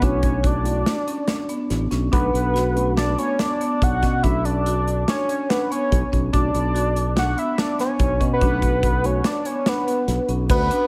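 Lightly reverberant, this brooding, driving slice of progressive band music in 5/4 moves at 143 BPM in B minor, alternating Dmaj7/B and Bm7. A hollow, bold sawtooth lead doubled at the fifth carries the melody up front with chorus, vibrato, slapback and tape echo, while a woody marimba with rosewood bars spins percussive arpeggios and a growly fingered electric bass and polished acoustic drum kit with punchy kick, hi-hat and crash drive underneath. A worn, slightly out-of-tune tine electric piano murmurs in the background until 9.2 s, and a grainy egg shaker appears briefly at 10.5 s.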